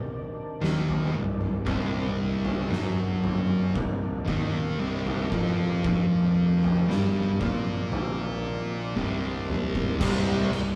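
A rough rehearsal-room recording with tube saturation and light reverb carries this heavy, sludgy stoner and doom metal excerpt at 58 BPM in C minor. An overdriven tonewheel organ opens alone with sustained chords, key click and slow rotary speaker in the background, before two thick fuzz guitars join at 0.6 seconds with a dark picked riff, one up front and one behind, over a growly fuzz bass and an oversized low-tuned drum kit with a fat snare and punchy kick. The drums play a fill from 9.0 seconds, and a bright, double-tracked distorted guitar adds its riff at 10.0 seconds.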